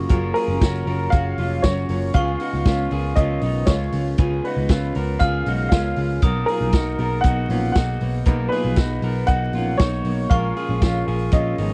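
This jangly indie pop excerpt moves at 118 BPM in a straight 4/4, with a restless, bittersweet mood carried over a progression from F#maj7 through C#7 and Bmaj7 to A#m7. A worn, slightly detuned upright piano takes the melody from 0.3 seconds, its audible action noise giving it an intimate, woody character. Underneath, a vintage drum kit sits up front with a punchy kick, medium-tuned snare, hi-hat and dark ride cymbal, while a foam-muted, round-toned picked electric bass anchors the low end. A slightly broken-up electric guitar through a small old amp plays arpeggios with slapback echo, and a dreadnought acoustic guitar with old strings picks a full-bodied accompaniment in the background. A mellow, reedy electric piano with fast tremolo adds accompaniment through its built-in speakers, and a bell-like glockenspiel struck with hard plastic mallets rings a second line from a boxy small room. 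The dry, close 1970s-style studio sound carries a layer of vinyl crackle.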